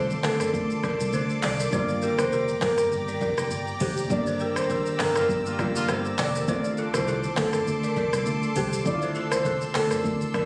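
A mellow, hypnotic afrobeats groove rolls along in 4/4 with a gentle swing on the sixteenths, carried by an electronic afro-pop drum kit with a deep kick, metallic hats, handclaps, rim clicks, shaker and toms, plus very quiet, low-tuned congas played with soft hands. Underneath, a round, foam-muted fingered electric bass sits dark and direct. Warm analog keys with a chorused pulse-and-saw tone and a filter sweep play the accompaniment over Dm7 and Gm7, while a lush, detuned unison pad holds bright sustained chords up high. A woody, buzzing balafon repeats a dry riff with a touch of delay, and a breathy, flute-like synth lead with vibrato carries the melody through chorus and delay. A smooth horn section adds a brief second line from 5.2 to 5.9 seconds, inside a band accent that runs from 4.1 to 6.5 seconds. This excerpt was captured on a phone in the room, with light studio reverb and compression.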